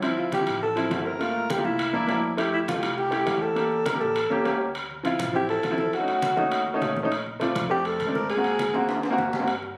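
Recorded on a phone in a studio room with light reverb, this lively, sunny Afro-Cuban jazz fragment at 203 BPM in F major features a growling, breathy alto saxophone solo up front from 0.2 seconds, backed by a present grand piano, a woody pizzicato upright bass, low-tuned, thick-skinned congas in the background and ringing, distant metal-shelled timbales, with a drum fill arriving at 8.9 seconds.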